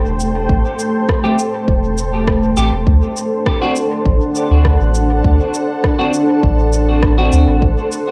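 A straight 4/4 groove is carried by an overdriven, layered electronic kick with a deep body and a tape-softened electronic shaker and rim click set lower in the mix under dub echo, both sounding as if re-recorded in a large room. This short ambient dub fragment, cut from a longer piece, has a hazy, deep mood. A soft, round sub bass mixing triangle and square tones sits up front with a fast attack and sustained, mellow notes. Above it, a granular cloud pad of detuned sine tones drifts in slow-attack, long-release chords, blurred and evolving through its own built-in reverb as the harmony moves from Am7 to D7 at 2.9 seconds. From 1.2 seconds a clean, picked semi-hollow electric guitar adds quiet, warm stabs, rounded by analog chorus, a low-pass filter and dub echo. The whole piece has the feel of a cassette home recording, with light reverb, tape coloring on most parts, and traces of lossy compression.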